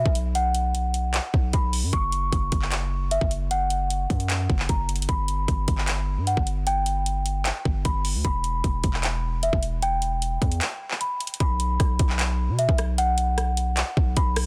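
Brooding and eerie, this short cut from a longer trap piece moves at 152 BPM with a half-time feel. A bell-like celesta carries the melody between E5 and C#6, its sweet, delicate tone heard close and dry through a low-pass filter. Underneath, a hard-hitting 808-style bass with a punchy sine body, a noise layer and a fast, decaying attack sits up front, ranging from E1 to B2. The electronic trap drum kit enters at 0.1 seconds with handclaps, metallic hats, rim clicks and a hard-clipped kick, all roughened by vintage 12-bit sampler grit. The harmony moves from B5 through F#5, G and Em, and a break at 10.6 seconds leads into a new section at 11.4 seconds that returns to B5. The whole sits in a digital ambience with a dense, heavily limited modern master.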